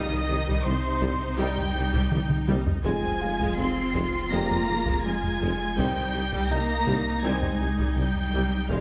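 High bowed violins carry the melody of this tense, relentless cinematic cue, singing from C6 to C7 with light vibrato and a smooth top, while a second violin line moves an octave beneath. It is a hybrid orchestral and electronic film score in C minor at 82 BPM in a straight 4/4, a short passage cut from a longer piece. Lush violas with a rich tone fill the accompaniment. The bass is weighted by expressive cellos with a soft attack, very quiet double basses, a background tuba and a deep, round sine sub bass. A mellow French horn section holds sustained chords in the background, and a dark baby grand piano adds a very quiet texture. A taiko ensemble played with heavy sticks enters at 0.5 s and plays a fill at 2.1 s, beneath a harmony that moves from Cm to Fm at 2.8 s and back to Cm, all set in a moderate scoring-stage reverb.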